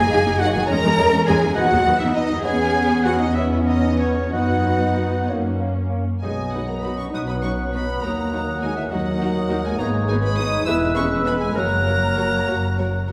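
Opening at once on a D#m/F# chord, this spirited, graceful classical-period movement in B major sways in 6/8 at 60-69 BPM with a rubato feel, as a rich, expressive violin section carries the melody over background violins, a clear close-miked oboe, an airy flute and a dark clarinet on second lines, with smooth violas and a warm bassoon in accompaniment, a portamento-tinged cello section and even double basses on the bass, and a mellow, distant French horn section holding chords from 0.4 s, all heard from further back in a wet scoring-stage reverb as the music moves into a new section at 6.2 s.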